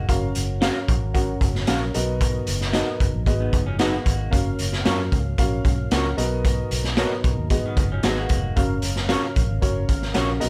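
A raw garage drum kit sits up front in this joyful, danceable excerpt of uptempo 1960s-style soul at 113 BPM in F# major, its punchy kick, gritty saturation and pumping small-room sound driving the straight 4/4 beat. A dark, foam-muted fingered bass and a woody, slightly detuned upright piano with audible action noise support chords that cycle through F#maj7, Bmaj7 and G#m7, while a mellow tonewheel organ holds sustained chords in the background through a slow rotary speaker. Two twangy, slightly broken-up electric guitars complete the picture: a bright one plays stabs through an analog chorus, and another plays a short riff in brief bursts at 3.4 and 7.7 seconds, all in a dry room with little reverb.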